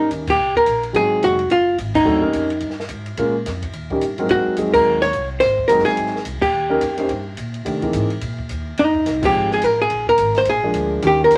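A brisk 214 BPM swing in 4/4 drives this relaxed, playful small-group jazz excerpt in Eb mixolydian, with the band hitting shared accents at points such as 0.2, 1.9 and 4.7 seconds over a progression that moves through Eb7, Ab7 and a C7alt before turning on Fm7 to Bb7. A clean, compressed hollow-body archtop guitar carries the picked melody up front, while a dark, mellow concert grand piano with deep bass accompanies close behind. A woody, growly pizzicato upright bass and a compact cocktail kit with dry, dark cymbals, a high-tuned snare and punchy kick sit lower in the mix, all wrapped in a wet small-room reverb and a layer of vinyl crackle.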